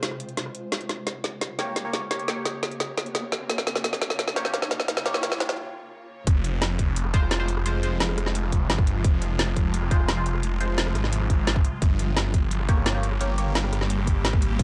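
A straight four-four pulse drives this dark, mechanical technical drum and bass fragment, where a woody snare, metallic hats and rim clicks fill out a build-up over a swarming, granular drone under a filter sweep and nasal, phased chord stabs, while a background riser climbs in at 1.7 seconds before a brief break at 5.6 seconds and the drop at 6.3 seconds brings in a tight, up-front electronic kick and a snarling, growling distorted saw bass.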